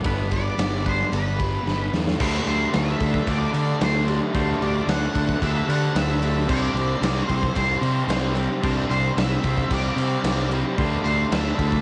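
The sound is a dry, lo-fi home cassette recording with a dulled top end, in this short excerpt of hazy, blissful shoegaze and dream pop rock at 112 BPM in 4/4, moving from G to D7sus4 and Csus2. Up front sit a round, dark fuzz-overdriven fingered bass and a gritty, saturated garage drum kit with a punchy kick and medium-tuned snare, whose fill at 1.7 seconds ushers in a bright, double-tracked overdriven garage guitar riff in the background at 2.2 seconds. An octave-fuzz lead guitar carries the melody through distortion, tape and analog delay from 0.3 seconds, over very quiet layers of thick fuzz guitar riffing, a twangy, scooped clean electric riff and shimmering, octave-doubled twelve-string acoustic arpeggios.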